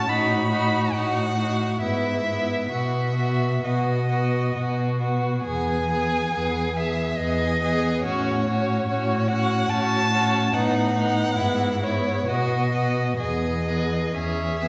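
In a flexible, rubato 3/4 at about 62-74 BPM, this slow, serene romantic movement for string quartet in E major unfolds as a passage cut from a longer piece. The first violin carries the bowed melody, with the cello's bass line beneath; the two are up front and share a rich, focused tone with vibrato. The second violin's smooth, even inner line and the viola's accompaniment sound clear and vibrato-tinged. A wet recital-hall reverb places the ensemble further back in the room.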